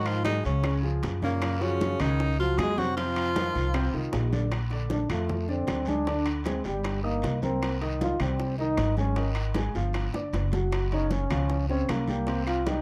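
A dark, lightly reverberant production frames this lively, danceable Afro-Cuban jazz at 155 BPM in a straight 4/4, with a thumpy, woody gut-string upright bass up front beneath a warm concert grand piano with deep bass. A bright tenor saxophone with vibrato and scooped notes carries the melody until 4.1 seconds over a smooth-topped trombone second line, and the trombone then takes a solo from 4.5 seconds. Distant metal-shell timbales ring out in a large room, while ringing congas, round low-tuned bongos, close and dry claves and a raspy, vintage guiro sit in the background, with a drum fill at 10.1 seconds.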